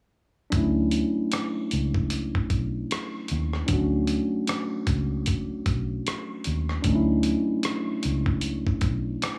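A light studio reverb surrounds this smooth, sensual neo-soul R&B excerpt at 76 BPM in D major, where a mellow, clean tine electric piano sits up front on a Dmaj9 chord from 0.5 seconds, a dark, round, foam-muted fingered electric bass stays low, and a gritty, compressed sampler-style drum kit with a thumpy kick, hi-hat and rim click, re-recorded in a small room, carries a 16th-note swing until 9.4 seconds.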